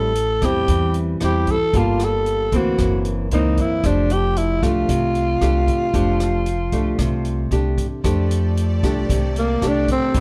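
A straight 4/4 bossa nova pulse at 114 BPM in F major sets a relaxed, romantic mood for this short excerpt, where a breathy, growling tenor saxophone with scooped notes and vibrato carries the melody up front over fingerpicked nylon-string guitar, woody pizzicato upright bass and an open jazz kit of hi-hat, rim click and boomy kick, before the saxophone moves into a solo at 8.0 seconds as a lush, bowed studio string section slips in softly with sustained chords, the whole set in a dark, lightly reverberant production.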